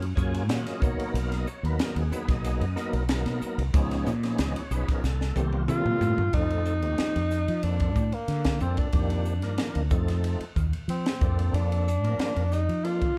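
A straight 4/4 groove at 92 BPM drives this slick, funky electric jazz fusion excerpt, cut from a longer piece. A crisp fusion drum kit sits up front with a high-tuned snare, punchy kick, hi-hat, ride and toms, while a mellow fretless bass, dark and round, anchors the low end from the first beat. A tonewheel organ opens with a fill in its first second, then comps through rich chords like Gbmaj9, Cbmaj7 and Db9, its lightly overdriven tone colored by key click, chorus vibrato and a slow rotary speaker. A drum fill from 5.0 s sets up the entrance of a breathy tenor saxophone at 5.7 s, whose whispered, intimate solo uses scooped notes, vibrato and a soft attack. From 6.3 s the harmony settles into F mixolydian, moving between F7 and Bbmaj9/F and Ebmaj9/F, and the band, heard together in one room with light reverb, keeps the groove polished and close.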